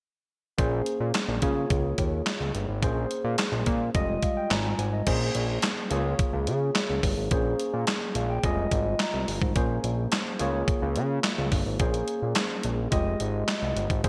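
A slick, funky early-eighties boogie funk groove at 107 BPM in Bb dorian starts at 0.6 s, with a detuned 8-bit drum machine, a fat, nasal analog bass and a barky tine electric piano entering together and cycling through Bbm9, Db6 and Fm9 chords. The up-front drum machine brings a thumpy kick, medium-tuned snare, handclaps, hi-hat and crash under gated reverb, while the sawtooth-and-square bass sits thick and sustained beneath it. The lightly overdriven electric piano, colored by lush chorus, plays fills at 3.9 s and 7.9 s, all set in a bright 1980s-style digital production with a lush hall reverb.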